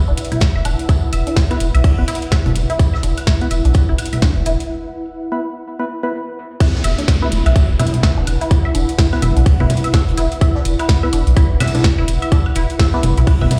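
Minimal techno at 126 BPM with a swung 16th feel and a cool, clinical mood, built on a tight, up-front electronic kick and a deep, saturated sub bass that pumps under sidechain alongside an ethereal, airy pad and a squelchy, resonant blip pluck riff with phaser and tape echo, while a booming analog drum machine with metallic hats, background jazz brushes, tape-warm congas and woodblock, and a hollow, dark organ stab entering at 1.5 s fill out the groove, a very quiet grainy texture flickers until 4.7 s before a break, and a downlifter sweeps across the opening of the drop from 6.6 to 10.4 s, all in a large studio reverb.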